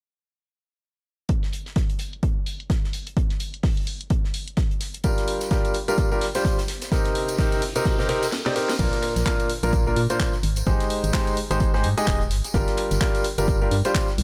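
A clear, up-front concert grand piano riff with audible action noise, sidechain pumping and digital delay carries this soulful, bittersweet piano house excerpt at 128 BPM with swung sixteenths. It enters at 5.0 seconds alongside a tambourine, over a punchy electronic kick, a garage kit with cracking snare and handclaps, and a dry damped 70s kit in the background. A background riser builds from 6.7 seconds before a hollow, dark, organ-like FM bass arrives at 8.8 seconds after a drum fill and brief kick drop, moving through chords from Gm7 and Cm7 to Bb, Abmaj7 and back to Gm7 in a small room.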